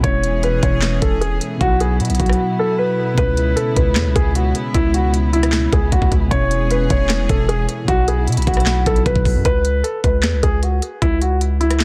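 Brooding, melancholic half-time trap hip hop in which a dark, up-front grand piano carries the melody over round, chorused and phased synth keys, intimate sul tasto chamber strings, a heavy, aggressive distorted 808 bass and a gritty, overdriven trap kit of knocking kick, sharp snare, crisp hats, claps and rim clicks that briefly drops out at 2.4 seconds, before the keys and strings fall away around 9.5 seconds to leave piano, bass and drums in a dense, dry mix.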